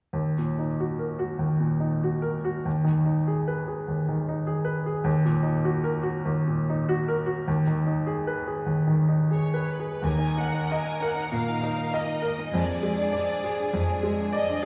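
A clear, up-front baby grand piano opens this brooding, tragic romantic movement in Eb minor at 99 BPM, carrying the melody with rubato and short sustain over chords alternating between Eb minor and Ab minor. At 9.3 seconds a distant violin section joins on the melody with vibrato and portamento, and at 10.0 seconds a close, lush second violin line and a chamber cello section on the bass enter with soft, bowed attacks. The whole is heard from further back in a wet concert hall, and this short excerpt is cut from a longer piece.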